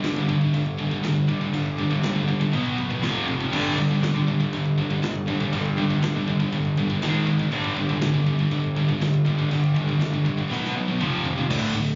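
A relentless, heavy metal riff at 120 BPM opens at once with a double-tracked crunchy overdriven guitar, a bright high-gain distorted guitar and a scooped high-gain guitar further back, all pounding through G5, B5, F5 and G#5 power chords over a picked electric bass and a punchy modern studio drum kit with china and crash cymbals, which breaks into a drum fill at 10.5 seconds, all heard as a short cut captured on a phone in a club-like room that leaves the top end muffled.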